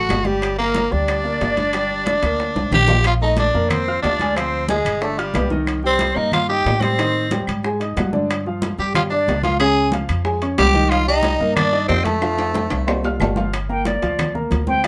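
Sultry and sophisticated, this Afro-Cuban jazz excerpt at 183 BPM in 4/4 moves from G minor to Bb major at 3.0 s, with a gritty, raspy tenor saxophone leading up front until 13.2 s and a breathy concert flute with vibrato and a soft attack carrying the second line before taking a short solo from 13.5 s, all over smooth, vintage grand piano chords, woody pizzicato upright bass, ringing high-tuned congas, metal-shelled timbales, very quiet low-tuned bongos and dry claves, with drum fills and a moderate club reverb.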